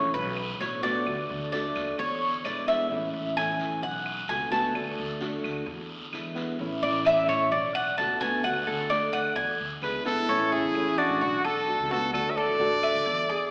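A straight 4/4 at 130 BPM carries this sunny, relaxed excerpt of Cuban son and guajira in A major, with raspy guiro, dry claves and thumpy pizzicato upright bass under a picked dreadnought guitar cycling through Bm7, D, E7 and A. The metallic, double-strung Cuban tres sits up front, playing arpeggios as the solo voice until 10.3 seconds. At 9.8 seconds a brilliant, punchy trumpet takes the melody with scooped notes and vibrato, and an airy, hollow alto flute adds a soft second line behind it, all bathed in a church-like reverb with an AM-radio tint.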